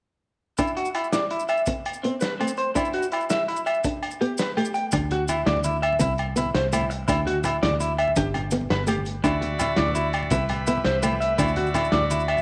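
This excerpt from a carefree highlife guitar band piece opens at 0.6 s with several parts at once: an up-front electric guitar through a small old amp plays slightly broken-up, picked arpeggios with a slapback echo, over a dark, fingerpicked nylon-string guitar accompaniment. A lo-fi vintage drum kit with a muffled, rolled-off top, a punchy kick and a medium-tuned snare sets the groove, alongside ringing agogo bells and grainy, close maracas. The tune moves at 111 BPM in a straight 12/8 in D mixolydian, drifting between suspended and added-ninth D chords with turns to A, G and C. At 4.9 s a foam-muted, fingered electric bass enters up front, joined by very quiet, damped, low-tuned congas played with soft hands. A reedy, airy accordion adds full sustained chords from 9.2 s, and a moderate plate reverb gives the mix a gentle, homely glow.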